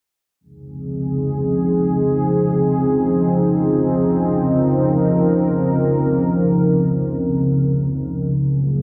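Floating and dreamy, this hip hop fragment features a lone analog pad, deep and moody with detuned sawtooth and triangle tones, a sub octave, slow attack and long release, sitting up front from 0.7 to 8.8 s, mellow and chorused, held in a huge ambient reverb within a dark, warm production.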